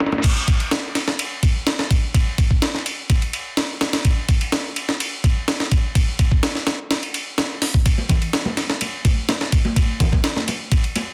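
A straight 4/4 breakbeat rolls at 126 BPM, funky and swaggering from the first beat of this short cut from a longer piece. The sampler-style drum kit sits up front, compressed, pitched up, gritty and tape-warm, with a thumpy kick, a high-tuned snare, hi-hat, ride and crash all darkened by low-pass filtering and set in a small room ambience. The drop hits at 0.2 seconds and carries the groove to the end. Congas flicker in briefly at the very start, then return at 8.0 seconds, tucked low in the mix with a ringing, high-tuned, vintage acoustic tone that sounds band-limited. Light reverb and a dense, heavily limited modern master frame the whole thing.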